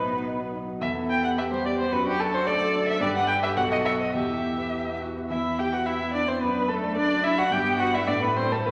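This restless, urgent fragment of a quick classical-period movement for piano quartet opens with the four players together, in E minor at 107 BPM in 2/4, with a pliant rubato feel. A con sordino violin carries the melody up front, its veiled, vibrato-touched tone sitting over a dark grand piano whose mellow, vintage voice and long sustain supply the accompaniment. Beneath them a muted cello traces a distant second line with gentle portamento, while a muted viola fills in softly from the background. The harmony moves from B through E minor, D/F# and G, with a tense B7b9 pulling back to E minor. The opening idea returns at 5.3 seconds and closes on A minor. A reverberant recital-hall ambience and a layer of vinyl crackle give the recording an aged, faded sheen.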